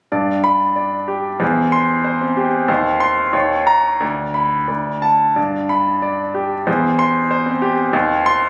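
Flexing with rubato in 2/4 at around 88-96 BPM, this heroic, sparkling fragment of a virtuoso classical piano study in G major features a solo grand piano, polished and up front with audible action noise and long sustain, ranging from D2 to C6 across its 8.5 seconds as the harmony moves from G through C/E and a darker Cm/Eb, all caught on a phone in a recital hall with compression and a moderate club-like reverb.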